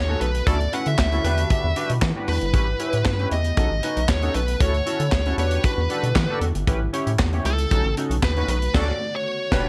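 A nasal, overdriven lead guitar with a parked wah and slapback echo carries the melody up front through this late-night, funky early-eighties boogie funk excerpt at 116 BPM in E dorian, cycling through Dmaj7, Em9, A9 and B7. Beneath it, a rubbery, hollow square bass and a modern studio drum kit with a punchy kick, a high-tuned snare, handclaps, crash and gated reverb drive the groove, while a glossy, chorused polysynth fills out the chords and a glassy FM pad sits very quiet behind them. A tight horn section with vibrato adds background accents from 0.5 to 1.4 seconds and again from 8.7 seconds, all set in a small room ambience.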